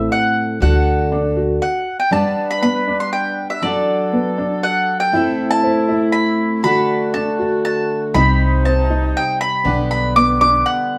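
A mellow, round mandolin carries the melody up front in this gentle, peaceful acoustic folk excerpt in 3/4 at 120 BPM in G major, over a full-bodied jumbo steel-string guitar picking the accompaniment and a worn, slightly detuned upright piano with audible action noise playing boxy arpeggios. A smooth-topped woodwind section with light vibrato enters at 2.1 seconds with quiet sustained chords, while a dark, thumpy gut-string upright bass plays pizzicato at the opening and returns at 8.2 seconds. The band sounds as if it is playing live together in one room with a wet studio reverb, and a C minor chord near the end lends a brief shadow.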